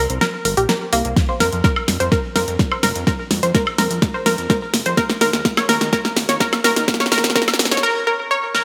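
Progressive house at 126 BPM with a dreamy, emotional mood, this short build-up is driven by a bright, round, wave-folded analog pluck playing arpeggios, treated with chorus, dub echo and sidechain pumping as a filter sweep moves across its sound. A fat, detuned sawtooth bass with sidechain pumping plays low beneath it until 7.8 s, while an up-front pop drum kit with a fat snare, hi-hat and woodblock plays a fill through the build. A deep, layered electronic kick drum enters at 1.2 s, and a lush hall reverb surrounds the mix.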